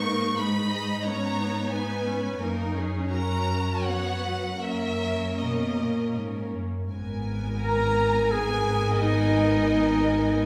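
Longing and bittersweet, this cinematic, emotional film score moves in a flexible, rubato triple metre, a short passage cut from a longer orchestral piece. A rich, focused violin section carries the melody with vibrato and a smooth top, while a second violin section adds an expressive line with portamento. Beneath them, violas fill out the accompaniment with an even, close tone, and an up-front cello section anchors the bass. At 6.9 seconds a lush double bass section joins on a low G#, and at 7.6 seconds a very quiet, airy flute ensemble and a classical oboe with light vibrato add further lines as a distant, roomy French horn section sustains chords. The whole ensemble sits in a reverberant recital-hall acoustic that gives the sound a spacious, glowing bloom.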